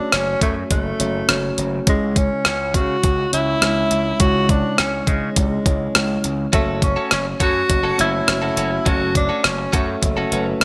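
Bright 1980s-style digital production bathed in a lush hall reverb frames this urgent, dramatic pop excerpt in F# minor at 103 BPM, moving from F#m to C#m and back. Up front, a thumpy, overdriven 12-bit drum machine with a small-room character drives kick, hi-hat and rim click, while a gritty, punchy slap bass and a clean tine electric piano carry the harmony beneath a mellow, jazz-style tenor saxophone solo with vibrato, soft attacks and scooped notes. At 6.5 seconds a compressed, picked electric guitar with lush chorus joins with a bright riff.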